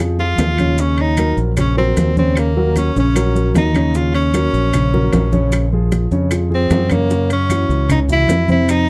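Afro-Cuban jazz with a fiery, driving mood, where a clear, present tenor saxophone carries the solo melody up front over a bright fingered electric bass, a dark, intimate grand piano with audible action noise, thick-skinned congas and ringing metal-shell timbales in the background, very quiet round low-tuned bongos, woody claves and grainy maracas, all set in light reverb with a dark, warm production.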